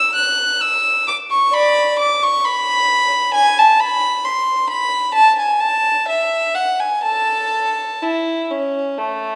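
A resonant church or concert hall surrounds this short recording, its reverb lingering for about 1.5 seconds and softening each phrase into the space. It is a brief cut from a baroque-style suite movement for unaccompanied violin in A major, tuned slightly high at A4 = 441 Hz, and the mood is serene and radiant. The tempo sits around 62-67 BPM in 4/4, but the player treats the pulse freely with an unhurried rubato. A single bowed violin carries everything for the full 9.4 seconds, ranging from A3 up to F#6. Its period-style, gut-string tone is rich and reedy, captured close and placed up front against the glowing hall.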